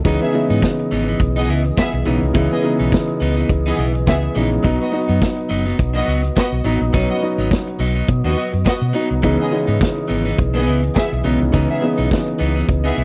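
Disco in C# minor at 104 BPM with a light sixteenth-note swing, this driving, sultry excerpt moves from C#m9 to B and back, set in a dry, close 1970s-style studio sound. Up front, a gritty, saturated vintage drum kit and a round, punchy hollow-body bass carry the groove, while a dark, boxy grand piano and a twangy electric guitar at the edge of break-up fill in the accompaniment. A lush, bowed violin section enters at 0.2 seconds with a second line, and a tonewheel organ with key click and slow rotary speaker holds sustained chords in the background beside a jingly tambourine.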